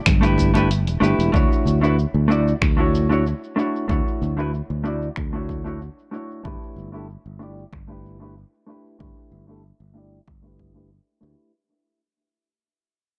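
A dry, gritty recording with little reverb carries this relaxed, blissful sunset chillout excerpt at 94 BPM in a straight 4/4, fading out across its whole length as it moves from G6/9 to Dmaj9 and back. Up front, a growly, punchy fretless electric bass sustains low notes beneath a dark, clean, picked hollow-body jazz guitar that runs through analog delay and a low-pass filter with a sweep across the passage. A punchy, layered electronic kick and a deep house kit of finger snaps, muffled hi-hat and shaker keep time, while bright, soft-handed congas sit in the background only until 1.0 seconds.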